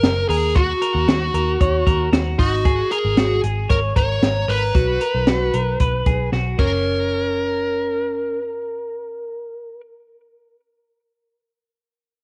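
A small-room home cassette recording of jangly indie pop in F# major at 114 BPM, this nostalgic, youthful excerpt sets a smooth overdriven lead guitar melody over bright, twangy twelve-string arpeggios with vibrato, a round, foam-muted picked bass, and a dark, high-tuned cocktail drum kit that plays a fill from 6.3 to 6.9 seconds and drops out at 6.7 seconds, as the chords move from D#m7 through G#sus2 and B5 to F#.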